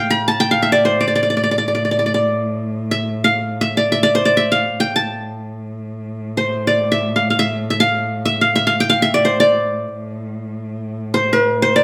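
Soulful and melancholic, this short passage from a longer Arabic maqam ensemble piece lasts 11.8 seconds. The qanun carries the melody from start to finish, its plectrum-plucked triple strings giving a bright-edged, acoustic tone that sits up front in the mix. Beneath it, a single bowed cello holds a low drone on A2 throughout, heard close and dark, with expressive vibrato and portamento. The cello sits well below the qanun in level. The two players perform live together in one large studio, and a wet reverb surrounds the sound.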